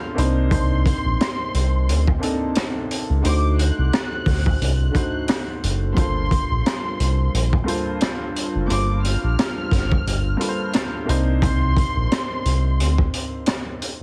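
A worn, woody upright piano, slightly detuned and filtered, opens this tough, reflective boom-bap hip-hop excerpt, joined almost at once by a gritty, saturated garage drum kit with a boomy kick, high-tuned snare, rim clicks and hi-hat, and a deep, round analog bass sitting up front. From 0.5 seconds a distant, lush violin section carries the melody high above, its smooth vibrato shaped by filtering and analog delay, over swung sixteenths and a progression moving from Cm9 through D7b9 to Gm11 before returning to Cm9. Light reverb, heavy radio-style compression and vinyl crackle colour the whole piece before the violins drop out at 12.9 seconds and the piano and drums carry on to 14.0 seconds.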